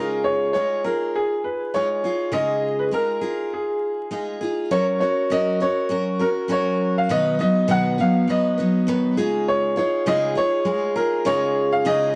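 Easy-going and carefree, this short pop excerpt at 101 BPM in F# major moves with a gentle swing, its bright, woody upright piano carrying the melody through analog delay while a full-bodied, picked steel-string acoustic guitar with audible finger squeak supplies the accompaniment, both sitting up front. Its chords drift from C#add9 to F# at 4.7 seconds, then to B and back to C#add9. A wet spring reverb and the worn, warbling character of old cassette tape, with vinyl crackle and wavering pitch, give the whole recording a lo-fi haze.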